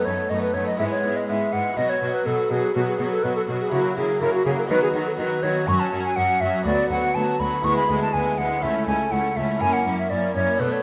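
Classical baroque-style concerto movement at 122 BPM in 4/4, festive and brilliant, in which a hollow, up-front concert flute carries the melody over a rich violin section with portamento and a second violin line in the background, a close-miked, dry Flemish-style harpsichord, a lush viola section and a clear, distant cello bass, all in a moderate recital hall reverb, cut from a longer piece.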